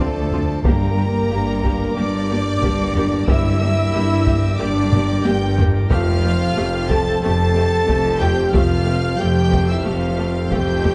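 A heroic, dark orchestral film cue opens on bowed strings: a smooth violin melody high above a focused, close second violin line and an intense, very quiet viola part, while a clear French horn section and a full pipe organ principal chorus in the background hold sustained chords. Rich cello and distant double bass sections carry the bass, and a taiko ensemble struck with hard sticks enters at 0.3 seconds, playing a fill from 4.9 to 5.9 seconds. The piece sits in a moderate scoring-stage reverb with a dark, warm production, moving from Dm7 through Gm to Fadd9.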